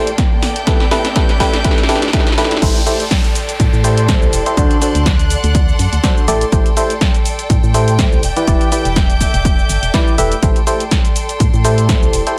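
A barking FM electric piano sits up front in this soulful, bittersweet piano house excerpt at 123 BPM in A dorian, playing a biting, percussive riff with a noise layer, chorus and digital delay, pumped by the sidechain along with the strings and bass. Beneath it, an organ-like FM bass gives a hollow, dark low end, tube-saturated and high-passed, while an overdriven, layered electronic kick drum hits hard and close, re-recorded in a large room. A punchy analog drum machine adds hi-hat, shaker and snare from a small room, and a drum fill drives the build-up before the drop arrives at 2.6 seconds. Two bowed ensembles hold the harmony: a reedy, period-style violin section with gut-string tone and light vibrato sustains chords, and a lush, even string section forms a texture in the background. An electronic riser and downlifter sit in the background from 0.2 to 6.5 seconds, and the whole mix carries light reverb and digital ambience over a progression moving through Em7, Am7 and D7.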